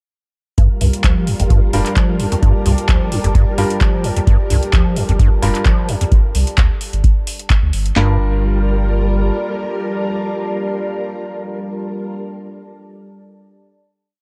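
Acid house with a trippy, gritty mood, where a squelchy, resonant square-wave acid line with a filter sweep, overdrive and tape echo rides a booming analog drum machine's deep four-on-the-floor kick, crisp snare, claps and metallic hats over a thick, saturated sub bass, while a lush vintage string machine with sampler grit and a moody detuned ambient pad pump together, joined by bright, echoing piano chord stabs, on Gm7 until the groove gives way at 8.0 seconds to a final chord that lasts until 12.3 seconds.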